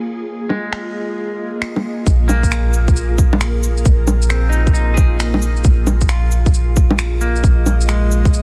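A tight, up-front electronic kick and a deep, round, dark 808-style bass arrive at 2.1 s to anchor this nocturnal, melancholic future garage excerpt in swung 4/4, joining an ethereal, mellow pad with chorus, phaser and sidechain pumping, a clean picked electric guitar with delay, and tape-tinged electronic bongos, finger snaps, shaker and cabasa, while a faint reversed, dreamy swell and a filter sweep colour the opening 2.1 s, the mix set in a dense, heavily limited master flecked with vinyl crackle, low-pass filtering and lossy compression artefacts.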